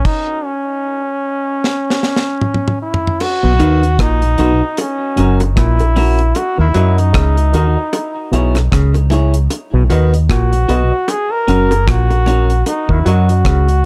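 A brilliant, up-front trombone with light vibrato opens this uplifting roots reggae excerpt at 76 BPM in B major, carrying the melody through tape echo and plate reverb over a dry, deep drum kit with a high-tuned snare and tight kick, which plays a stop before a fill at 1.6 seconds. At 3.2 seconds tight, hard-handed bongos arrive, and at 3.4 seconds the groove fills in with a round, dark fingered dub bass sitting up front and a stringy, mellow clav riff through auto-wah, followed at 3.6 seconds by a slightly broken-up picked electric guitar with echo and reverb. The parts move over a swung sixteenth-note feel through B, F#, D#m and C#m.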